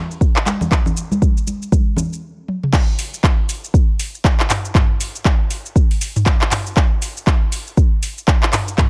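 An electronic afro-pop drum kit opens this excerpt from a longer house track, its crash cymbal, handclaps, metallic hi-hats, shaker and toms sitting up front, joined almost at once by a deep, produced electronic kick. The mood is earthy and driving at 119 BPM in 4/4, with a 59% swing on the sixteenths giving the groove a loose, rolling push. Thick-skinned, medium-tuned acoustic congas add a close, dry layer of percussion early on and fall away by 2.1 seconds. A brief stop follows, broken by a drum fill at 2.5 seconds, and at 2.7 seconds the drop arrives, with kick and kit carrying the rest of the passage. The sound is dry, with little reverb, the kick leading the mix.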